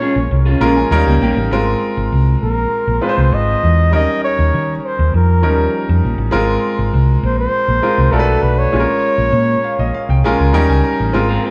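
A straight 4/4 pulse at 100 BPM drives this upbeat, urban pop piece in Ab major, cut from a longer work and played live by a band in one large studio room with moderate reverb. A breathy flugelhorn carries the melody up front, mellow and whispered, with a soft attack, jazz-style vibrato and an intimate solo voice. Beneath it, a clear concert grand piano accompanies with polished, long-sustaining chords and deep bass, its action noise audible, and adds fills near the start and again toward the close. A dark, round hollow-body short-scale bass, fingered and amped with tube saturation, sits prominently throughout. A bright, twangy electric guitar through a small old amp picks a slightly broken-up riff for the first 1.4 seconds and returns at 11.1 seconds. The harmony moves through Bbm7, Eb7 and Ab69, with a brief Bm7 passing into Bbm7 before settling back on Eb7.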